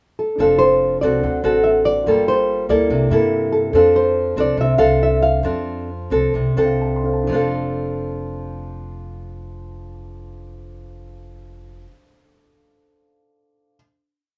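A thumb-plucked nylon-string guitar opens this complete bossa nova piece with a pickup at 0.2 s, carrying a motif-based melody in song-like phrases. Its tone is classical and up front, with audible finger squeak. From 0.4 s a second nylon-string guitar, small and fingerpicked, plays thumb bass and syncopated plucked chords, while a pizzicato upright bass with gut strings adds a woody, thumpy dotted root-and-fifth line. In the background, an intimate, vintage concert grand piano holds smooth drop-2 chords with deep bass and audible action noise. In F major and straight 4/4 at around 121-144 BPM, the romantic, relaxed tune moves through F6, D7, Gm9 and C13, then slows while the piano plays a brief fill ending at 7.3 s, leading into a final chord. The sound is a rough home demo mix with light reverb and a small-room ambience.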